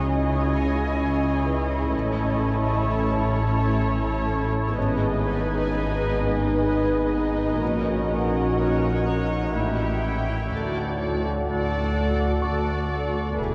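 A veiled bed of muted, bowed strings opens this ominous, mysterious cinematic passage in a slow 3/4, with violins on a second line, violas in accompaniment, and cellos and double basses holding the low end, all playing con sordino with a veiled, vibrato-tinged tone. Beneath them a saturated sine sub bass drones, deep and thick, while a bright, resonant sawtooth texture bubbling with random filter steps sustains chords above, treated with chorus and its own reverb. A felt-muted upright piano adds a very quiet, mellow, intimate texture until 7.6 seconds and returns at 12.4 seconds. At 10.5 seconds a muted studio violin section takes up the melody with a soft attack and smooth top as the harmony lands on D. The whole is drenched in a cavernous cathedral reverb and coloured by worn cassette tape, its warbling pitch drift and dulled highs giving this fragment of a longer piece an aged, uneasy haze.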